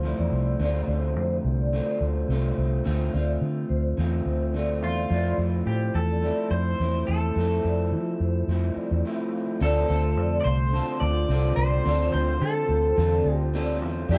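This lonely, wistful indie pop excerpt in D minor at 106 BPM, with a light 16th-note swing, opens on a twangy, lo-fi rhythm guitar laden with chorus and vibrato and a round, foam-muted bass sitting up front, while two slightly broken-up guitars through small old amps share the texture as a ringing, metallic vibraphone hums in a boxy room with ensemble chorus and analog delay; a dark, picked lead guitar with lush chorus and delay returns at 4.8 seconds over Dm7 and Fmaj7, and after a brief break at 9.0 seconds a hollow, flute-like, detuned pad drifts in behind at 9.6 seconds, all within a dark production with light reverb.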